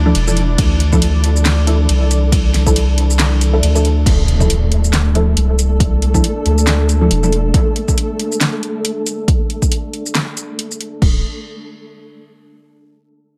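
A round, soft sub bass sits up front in this brooding, meditative dubstep excerpt at 138 BPM in a swung half-time feel in D minor, holding the low end until about 7.5 s. A drum kit with a fat snare, metallic hi-hats, handclaps, shaker and crash starts at 0.1 s and is joined by a punchy, overdriven electronic kick at 0.6 s, while muted, detuned chord stabs with phaser, chorus, tape colour and dub echo play over an evolving, mellow pad and a grainy, flickering granular texture. The harmony moves from Dmadd9 to Dsus2 as an electronic impact hits at 4.1 s, all set in a dry room.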